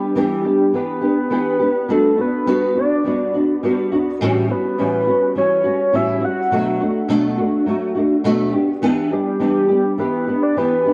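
This wistful, hazy indie pop excerpt moves at 104 BPM in a straight 4/4, cycling through Em7, Gmaj7, A13 and Bm7 before returning to Em7. A thumb-plucked flamenco guitar sits up front with acoustic warmth, audible finger squeak, an ensemble chorus and a warbly pitch drift, while a soft octave-layered synth lead carries the melody in a round, dark tone of triangle and sine with a sub octave, fast attack, sustained notes, vibrato, subtle chorus and tape echo. A moderate spring reverb and the worn, warbling character of old cassette tape give the recording a faded glow.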